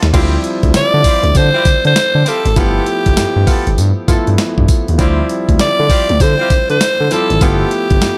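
A dry, up-front mix carries this bouncy, slick new jack swing excerpt at 99 BPM in D dorian, where a gritty sampler-style soul drum kit with thumpy kick, crash, hi-hat, snare and tambourine and a smooth, saturated gliding synth bass drive the Dm11 and G13 changes beneath polished concert grand piano accompaniment and distant, roomy jazz horn stabs, while a raspy, close-miked alto saxophone with tape echo takes the melody from 0.8 s.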